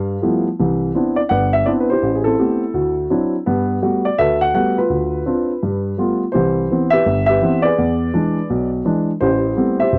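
Solo jazz at a swinging 167 BPM in 4/4, this playful, warm cut from a longer piece features a dark, mellow baby grand piano with a natural, short-sustained tone, placed up front in a dry, close 1970s-style studio sound, moving through rich extended chords such as G13, Cmaj9 and Am9 in G major before shifting to C major at 6.3 s for a passage built on Cmaj7, E7 and Am9.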